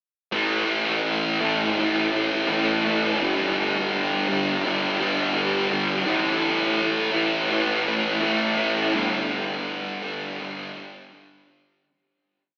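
A straight 4/4 pulse at 84 BPM carries this short, hazy and dreamy rock piece, tuned slightly sharp to A4 = 441 Hz, where a thick, double-tracked fuzz guitar plays alone from 0.3 seconds. The guitar sits up front with strummed chords and whammy-bar dips, alternating A5 and G5 in its low register, its distortion shaded by subtle chorus and a diffuse ambient delay. The mix is soaked in a huge ambient reverb with an AM-radio colour, and it fades out from 9.0 seconds to the close.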